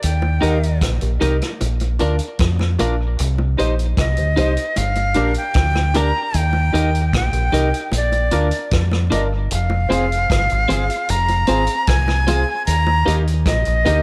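A breathy, bright jazz flute with vibrato and a crisp, chiffy attack carries the melody up front through tape echo, over a dark, round dub bass that is fingered and sits just as close. In this serious, hypnotic roots reggae excerpt, a vintage kit with a punchy kick and rolled-off top plays hi-hat, kick and rim clicks in tape echo, low-tuned bongos sit in the background from 0.2 seconds, and from 0.4 seconds a clean, compressed electric guitar with subtle chorus and echo joins smooth grand piano stabs. The chords cycle through Eb, Bb, Cm and Gm before a new section turns to Fm at 9.5 seconds, in a room of light reverb and studio ambience.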